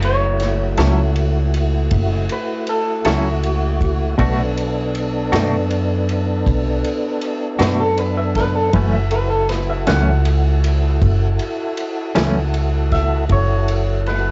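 A bright, twangy electric guitar through a small old amp carries the solo across this mournful, smoky slow blues excerpt in 12/8, over a woody, up-front pizzicato upright bass, lightly overdriven tonewheel organ chords with key click and a slow rotary speaker, a hollow-body semi-hollow guitar comping with tremolo from 0.8 to 12.4 seconds, and a vintage kit of boomy kick, snare and dark ride in a pumping small room, all moving from F#m7 to Bm7 and back on a lo-fi home cassette recording with light plate reverb.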